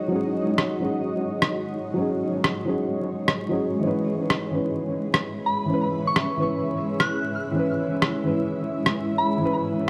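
Swung sixteenths at 129 BPM in 4/4 give this melancholic, ghostly future garage excerpt in C# minor its lilting pulse, carried by an electronic rim click that enters at 0.6 s and stops at 8.9 s, pitched down, muffled and overdriven, as if sampled and re-recorded in a small room. From the start, a felt-muted upright piano sits up front with an intimate, dark tone and short sustain, its accompaniment trailing tape echo. Beside it, a granular cloud pad holds sustained chords, blurred and evolving, with bright detuned layers, its own reverb and a gritty vintage 12-bit sampler edge. The harmony shifts from G#7sus4 to C#m7 at 3.8 s. At 5.5 s a soft FM synth bell brings a pure, gentle melody high in the register, treated with chorus and tape echo. The whole mix is soaked in echo and a wet, digital chamber ambience, with vinyl crackle adding a worn, haunted surface.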